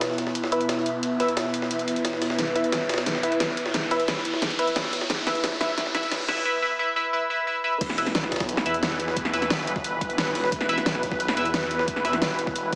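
A straight 4/4 pulse at 177 BPM drives this tense, aggressive slice of dark technical drum and bass, with an up-front dubstep kit of huge, overdriven snare, bright hats and crash layered over a gritty, pitched-up jungle sampler kit in the background, while a nasal, band-passed chord stab with phaser, tape echo and 12-bit grit cuts through the mix. During the build-up a sweeping resonant pad with chorus and sidechain pumping, a blurred granular cloud pad and an electronic riser gather under filter sweeps and a drum fill, the riser and cloud pad stopping at 6.5 seconds. At the drop at 7.8 seconds a snarling, detuned saw bass and a knocking, overdriven electronic kick arrive, all heard through a heavily compressed, small-speaker radio sound in a wet digital room.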